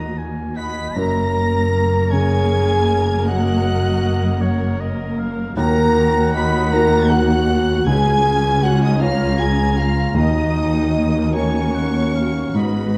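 Bathed in a dark, wet concert-hall reverb, this sorrowful, bittersweet cinematic fragment of about 13 seconds drifts through Eb minor at 52 BPM in a rubato 6/8, moving from Eb minor to Gb and Db before settling home. A rich, focused violin section sings the melody high above with vibrato, while a pure, hollow concert flute, a smooth-topped solo oboe with light vibrato and a second, softer violin section trace second lines beneath it. A dark, distant French horn section holds sustained chords and sits most prominently in the blend. In the background, a felt-muted upright piano adds a soft, intimate accompaniment alongside a lush viola section that bends between notes with portamento. Cellos, also gliding with portamento, and double basses with a gentle attack anchor the bass, giving the low end a warm, expressive depth.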